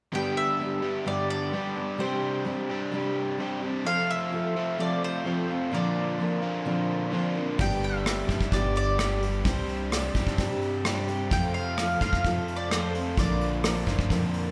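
Jangly and nostalgic, this folk rock and heartland rock excerpt moves at 129 BPM in a straight 4/4, opening with a bright, picked mandolin melody over a full-bodied acoustic guitar with audible finger squeak and a dark, overdriven, double-tracked electric guitar riff carrying slapback echo. At 7.6 seconds a woody, growly pizzicato upright bass and an airy brush drum kit with tight kick, hi-hat and rim click join in, the drums sitting up front. The cycle of G, Csus2, F and Bbadd9 repeats under a lush hall reverb that gives the whole a big arena sound.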